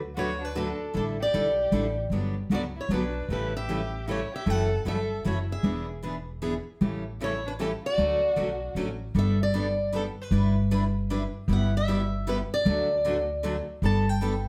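A charming, swinging waltz feel drives this acoustic string swing excerpt, with a woody pizzicato upright bass up front beneath a bright, boxy picked swing-style guitar carrying the melody. A close, bowed violin adds an expressive second line with vibrato and portamento until 8.7 seconds, while two bright, picked steel-string acoustic guitars provide accompaniment, one sitting in the background. The sound comes from further back in the room through a wet studio reverb, and the harmony moves to a new section at 9.1 seconds.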